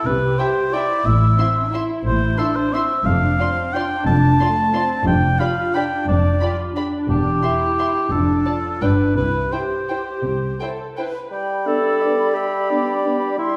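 Festive and elegant, this orchestral ballroom waltz in C major sways in 3/4 at 158-195 BPM with a rubato feel, its muted, veiled string sections in a reverberant hall carrying the melody high in the violins while a chamber violin section adds a second line in the background, and violas, cellos and double basses supply lush accompaniment and bass beneath a mellow, up-front oboe. At 11.3 s the strings give way to a new section where an airy flute group and a clear bassoon join the oboe, followed moments later by a smooth-topped clarinet and a dark, distant French horn section holding sustained chords. The recording is cut from a longer piece.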